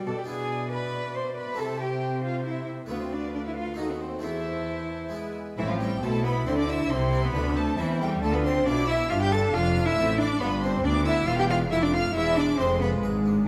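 Classical baroque-style concerto movement in a dramatic, stormy mood, cut from a longer piece in a straight 3/4, where an up-front solo cello carries a smooth, even melody while a high violin section also plays a melodic line, and a second violin line, a focused viola section, a full-bodied Flemish-style harpsichord in the background and a cello section with soft-attack portamento fill out the texture, and a lush bowed double bass section joins at 5.6 seconds, all set in a moderate recital hall reverb.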